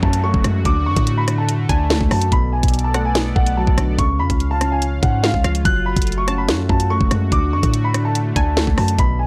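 An up-front electronic drill kit leads this dark, tense hip hop excerpt, with a knocking kick, sharp snare, hi-hat and rim click driving a half-time feel at 144 BPM. Beneath it, a punchy, heavy 808-style bass with a sine body and fast attack anchors the low end as the chords move through F#madd9, D, Bm7 and C#. A dark concert grand piano carries the melody high in its range, mellow and boxy with long sustain and analog delay. A glassy, crystalline wavetable pluck sits in the background as a second line with chorus and delay, stopping at 8.9 s. A felt-muted upright piano adds soft, intimate accompaniment, and a full-bodied sawtooth pad with chorus holds evolving sustained chords. A very quiet downlifter appears only in the first 2.3 s, and the whole mix has a dry, gritty hardware character with little reverb.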